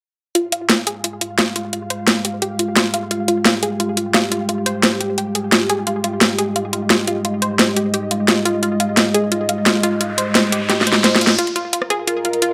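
Dark technical drum and bass at 174 BPM in F minor, mechanical and aggressive, where overdriven, up-front electronic drums with a cracking snare, bright hats and rim clicks drive from 0.4 seconds under a nasal, chorused and phased analog pluck arpeggio with delay and a filter sweep, a deep, detuned sawtooth pad holding sustained chords on Fmadd9 from 1.0 seconds, a background riser and drum fill leading into a build-up, and a blurred granular cloud pad drifting in at 11.8 seconds, all set in a moderate room reverb in this excerpt from a longer piece.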